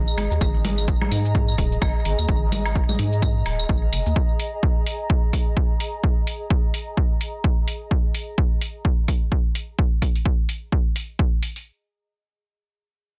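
A rubbery, hollow square-wave bass with a resonant filter pluck and a moving notch bounces through the opening of this short cut of hypnotic, sparse minimal techno, sitting low and dark under sidechain pumping until it drops out at 4.1 seconds. Above it, a warbling, nostalgic pad of detuned sawtooth and triangle tones drifts in with a slow attack and long release, its lo-fi haze thickened by chorus and built-in reverb and also pumping, before dropping out at 7.9 seconds. Overdriven claves, woodblock and congas with delay, re-recorded in a large room, add a gritty, roomy accent over the same opening stretch. A punchy analog kick drum and tape-toned electronic hi-hat and shaker sit up front and carry the 4/4 groove at 128 BPM, swung at 58% on the 16ths, from the first moments and on through the close after the other parts thin out. The music is tuned to A4 = 438 Hz, and the dry, dense, heavily limited modern master keeps the spare arrangement close and forceful.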